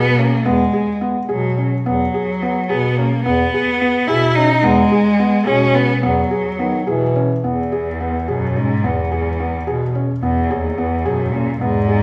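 A clear, focused bowed cello with vibrato carries the melody up front in this shimmering, restless chamber piece in 5/8 at 216 BPM (eighths), an excerpt cut from a longer work in E lydian. A soft, felt-muted upright piano plays intimate arpeggios with audible action noise and short sustain, while a bass clarinet supplies a warm, jazz-style bass line with subtone, vibrato and scooped notes, all set back in a wet recital hall. A mellow, punchy French horn adds a brief second line from 6.6 to 7.4 s, ending just as the harmony moves from Eadd9 to E.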